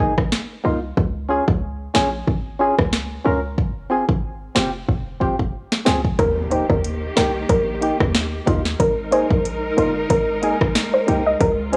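A dry, gritty hardware sound with cassette-tape character, small room ambience and light reverb frames this tough, bouncy dancehall excerpt at 92 BPM in 4/4, with a 16th-note swing. From the start, a hollow, dark organ stab with chorus sits up front, over a short, punchy, tight 808-style bass with a fast attack and a decaying tail. The electronic afro-pop kit enters at 0.2 seconds, its deep kick, sharp snare, metallic hats and rim clicks carrying a tape-warm edge. The drums fill from 4.9 seconds into the second section at 6.2 seconds, where a very quiet electronic impact arrives with a soft, round pluck melody with chorus and a lush string section. The strings hold sustained chords with vibrato and portamento, their smooth top pumping under sidechain. The harmony moves through Absus2, Db, Fm and Eb before returning to Absus2 at 8.8 seconds.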